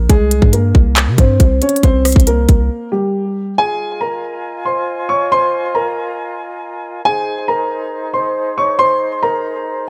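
Brooding and dark, this half-time trap excerpt opens with a boxy, up-front concert grand piano melody carrying delay over a deep, boomy 808 bass and a hard-clipped kick with crisp hats, handclaps and rim clicks, until a break at 2.7 seconds gives way to a mellow flute section holding vibrato-tinged chords from 3.6 seconds while the piano continues in light reverb.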